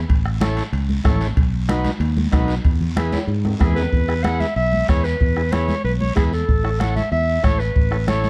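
A dark, warm production with light reverb frames this joyful, danceable cumbia excerpt, built on an up-front fingered electric bass, a soft-beater bombo, bright close congas, a raspy, distant guiro and ringing metal-shell timbales that drop out at 3.8 seconds. A vintage, reedy combo organ with light vibrato and overdrive accompanies from 0.4 seconds and adds a brief fill, and a drum fill leads into the second section. From 3.6 seconds a clear, classical-style clarinet carries the solo melody up front.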